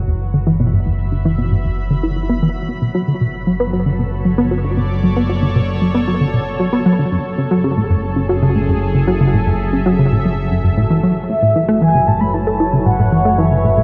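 Ambient, sequencer-driven space music in F# minor at 115 BPM, hypnotic and mysterious, cut from a longer piece and bathed in a dark production with a huge reverb lasting 7.5 s. A thick, detuned unison pad fades in on sustained chords over an evolving pulse-width drone on F#1, while a punchy, funky bass riff sits up front under a filter sweep with analog chorus and tape echo. At 11.3 s a round, warbling horn-like synth lead enters with vibrato, lush chorus and tape echo, carrying the melody over the closing Aadd9/F# chord.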